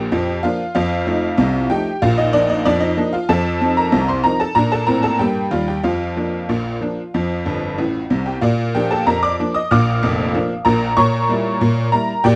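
A dark studio sound with moderate reverb frames this cheerful, lively ragtime passage in straight 2/4, cut from a longer piece, where a solo tack piano, jangly, metallic and up front, plays across a broad range, adds a honky-tonk fill at 7.5 seconds and moves into a new section at 8.4 seconds.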